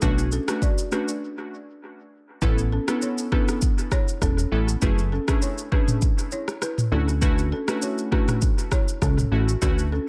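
Set in light reverb with an echo-heavy mix, this smooth, sultry afrobeats excerpt moves at 100 BPM with a swung sixteenth-note feel, opening on Bm9 before a short break at 1.2 s and then settling into Aadd9, F#m7 and Dmaj7. Up front, an electronic afro-pop kit brings a deep kick, rim clicks, shaker and toms soaked in dub echo, while a punchy, funky analog bass pairs sawtooth and pulse tones, ring modulation and a plucky filter. Glassy digital keys with a sine-like tone, a filter sweep and chorus carry the harmony, and a round, woody balafon riff struck with soft rubber mallets also trails dub echo.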